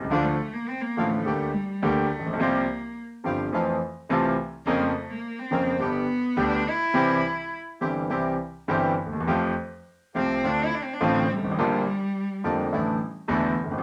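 Passionate and melancholic, this rubato tango fragment features an intimate, bowed cello solo with vibrato and a soft sul tasto attack up front, set over a clear concert grand piano with deep bass and long sustain, reedy bandoneon stabs, and a woody pizzicato upright bass in the background, within a wet studio reverb.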